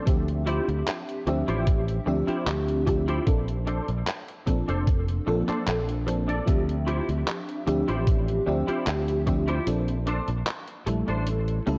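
Vaporwave at 75 BPM in D minor, this short cut from a longer piece feels nostalgic and hazy, tuned slightly sharp and wrapped in the warble of worn cassette tape with a light reverb. An up-front FM electric piano layered with a soft pad carries the accompaniment, its lush, dreamy, detuned tone colored by phaser, analog chorus and tape echo. A clean semi-hollow electric guitar plays a riff between D4 and D5, softened by ensemble chorus, a low-pass filter and tape echo. Underneath, a bright, punchy fingered electric bass with tube saturation sits forward, while a thumpy electronic kick drives the pulse until 9.4 seconds and a detuned 8-bit drum machine adds handclaps and hi-hat throughout. The harmony moves from Dm11 to Bbmaj9 and back, and a break from 9.7 seconds lands on Bbmaj9 before closing on A7.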